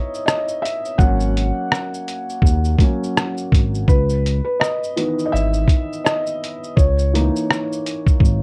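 Lo-fi hip hop at 83 BPM with a lazy 16th-note swing in C# dorian, this hazy, reflective fragment of a longer piece sets a mellow, low-pass-filtered felt-muted upright piano soloing over C#m9 and G#9sus4 chords from the start, a pitched-down, compressed sampler-style drum kit of thumpy kick, hi-hat, rim click and shaker entering at 0.1 seconds, and a smooth, sustained sawtooth-and-square synth bass tinged with ring modulation joining at 1.0 seconds, all wrapped in light reverb and a dark production.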